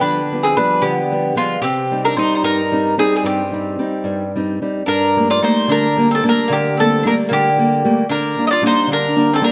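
In a 6/8 at 74 BPM, this romantic, passionate Italian folk serenade fragment sets a woody, double-strung mandolin melody up front over a softer bowl-back mandolin second line and a small, fingerpicked nylon-string guitar accompaniment, moving from C minor to G minor at 4.9 s within the moderate reverb of a scoring stage captured by close, detailed microphones.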